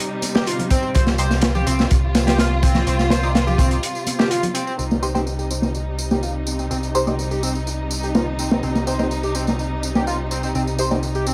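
Funky, energetic breakbeat in C minor at 125 BPM, cut from a longer piece, where a crunchy, rolled-off breakbeat kit with a punchy kick drives alongside tambourine, thin-skinned congas that drop out at 4.5 seconds, a round, up-front picked electric bass, and rich bowed chamber strings with vintage sampler grit and sidechain pumping, while a screaming, guitar-like overdriven synth lead riffs with chorus and delay and nasal, band-passed chord stabs with phaser cut through, all set in a small room with vinyl crackle, a break at 3.8 seconds, and a filter sweep on the lead from 4.8 seconds.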